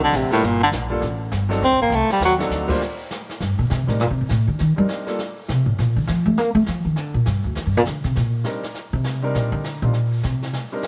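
A breathy baritone saxophone opens this moody, swinging small-group jazz excerpt in G minor at 202 BPM, taking a brief solo with soft attack and vibrato from the start until about 2.3 seconds. A woody upright bass, plucked on steel strings and sitting up front, carries the line through and then takes over with its own solo from 2.8 seconds, running to about 10.5 seconds. A smooth, vintage-toned grand piano comps in the background through the first 5.2 seconds and returns briefly near the end, over harmony that moves between G minor and C minor colours with a D7b9 turn. A jazz drum kit played with brushes keeps time quietly beneath, with dark cymbals, a medium-tuned snare and a boomy kick, and adds a short fill just before the bass solo. Light reverb and a small-room ambience give the group a close, natural sound.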